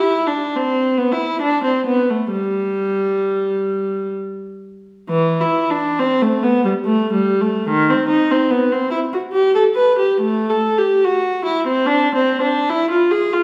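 Classical baroque-style suite movement for unaccompanied viola in G major and 3/4, flowing and serene at a rubato 62-74 BPM, where a single bowed viola with a reedy gut-string tone, light vibrato and period-style phrasing sits up front for the full 13.4 seconds, wrapped in a wet recital-hall reverb that sets the listener further back in the room.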